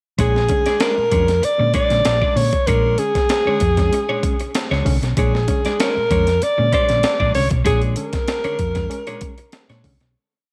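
A breathy, vibrato-laced alto saxophone carries an up-front hook melody over an energetic, gritty 96 BPM funk groove in Bb mixolydian, where a compressed breakbeat kit with a thumpy kick, high-tuned snare and ghost notes plays alongside a round, punchy hollow-body bass riff with chromatic approach notes, while a clean semi-hollow guitar scratches out sixteenth-note rhythm and a reedy, lightly overdriven electric piano with fast tremolo adds percussive stabs in the background on a Bb7#9 chord, all under light digital reverb before a fade-out from 7.7 seconds.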